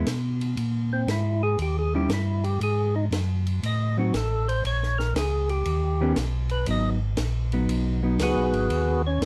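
A percussive tonewheel organ carries the melody from 0.9 s, its fat, lightly overdriven tone marked by third-harmonic percussion, vibrato and a slow rotary speaker, sitting up front in this smoky, soulful soul jazz organ trio. Beneath it, a second tonewheel organ handles the bass line from the opening moment, mellow and round with a clean key click and its own slow rotary swirl. A hollow-body electric jazz guitar, dark and fingered, supplies up-front accompaniment until 8.7 s, while a compact cocktail drum kit, acoustic and dry with dark cymbals and a high-tuned snare, keeps time quietly on hi-hat, ride and snare. The groove swings in 4/4 at 118 BPM in G# minor, moving through chords such as G#add9, D#7b9, Adim7 and A#m7 before settling on G#m7. Light reverb and close, detailed miking frame the trio, though lossy compression artefacts color this short cut from a longer piece.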